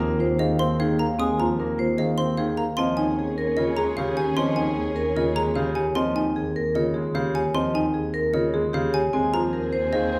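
A ringing, metallic vibraphone carries the melody over woody marimba and sharp, plastic-mallet xylophone arpeggios, a clear, intimate grand piano, and an up-front bowed double bass section in this propulsive, bright minimalist pattern piece at 151 BPM in Eb mixolydian, where a distant clarinet adds a second line and a focused chamber string section adds sustained chords from 2.8 to 5.7 seconds and again at 9.1 seconds, all set in a wet recital hall.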